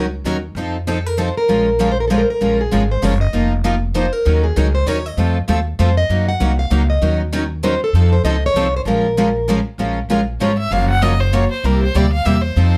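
Close, detailed microphones in a moderate studio room give this fragment of a longer jazz manouche piece an intimate, present sound. It swings in 3/4 at 195 BPM in B-flat minor, with a bittersweet, virtuosic mood over chords such as Ebm7, F7, Bbm7 and Gb6. Two picked steel-string acoustic guitars carry the accompaniment throughout: one bright and up front with an auditorium body, the other quieter and boxy, with audible finger squeak. A pizzicato upright bass on gut strings anchors the low end with a woody, thumpy tone. From 0.9 s a plugged-in parlour guitar takes the melody, sounding warm and up front. At 10.4 s a nasal, earthy violin enters for a short solo, bowed with light vibrato and an airy touch.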